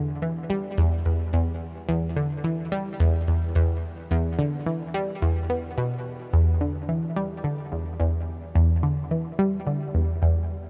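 A straight 4/4 pulse at 108 BPM carries this hypnotic, mysterious ambient excerpt in E minor, cut from a longer piece. A lone analog pluck plays from 0.0 to 10.3 seconds, ranging from E2 to B3, its round, nasal sawtooth tone edged with a noise layer and shaped by a fast attack that then decays. Chorus, phaser, tape echo and cassette tape colour the bright, up-front pluck, set in light reverb with a cassette-tape character over the whole recording.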